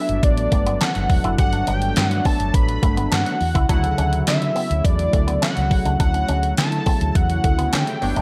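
Early-eighties boogie funk at 104 BPM in D major, smooth and danceable, this short excerpt moves from Gmaj7 to Dmaj7 at 3.7 seconds as a nasal, detuned analog sawtooth lead with vibrato and slapback echo carries the melody over a glossy, evolving chorused polysynth, while a twangy, compressed envelope-filtered guitar riff with lush chorus sits in the background, a round, woody fretless bass with the same lush chorus anchors the low end, and a clean 12-bit drum machine plays up front in gated reverb with a thumpy kick, fat snare, hi-hat and handclaps.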